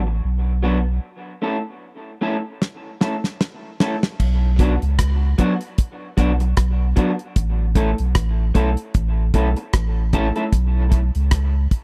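A dry, close 1970s-style studio sound with small room ambience frames this heavy, spacious dub reggae excerpt in B minor at 76 BPM, swung on the sixteenths and moving between Bm and A before settling on Bsus2. A deep, round, sine-like sub bass sits up front from the start, joined almost at once by a slightly broken-up, picked electric guitar through a small old amp, treated with dub echo. A break opens at 1.0 s, and the damped 70s kit, built from tight kick, medium-tuned snare, rim click, hi-hat and dark crash cymbal, enters at 2.6 s with a fill before the second section begins at 4.2 s.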